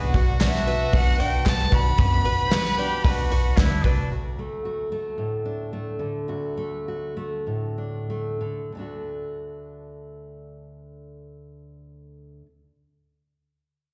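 Warm and anthemic, this indie folk cut from a longer live performance moves in straight 4/4 at 90-114 BPM in D major, tuned to A4 = 437 Hz, opening on Bm and shifting to D at 4.1 seconds, where the tempo begins slowing down. For the first few seconds a dark, bowed fiddle carries the melody from 0.4 seconds with light vibrato and slapback and tape echo, joined by a distant, classical-style trumpet second line, shimmering octave-doubled twelve-string guitar, a plunky banjo in the background, a woody pizzicato upright bass and a loose, up-front drum kit with a tight kick, plus hollow handclaps and a very quiet, jingly tambourine. From 4.1 seconds a fingerpicked steel-string acoustic guitar takes over, all heard through the venue's PA with recital hall reverb.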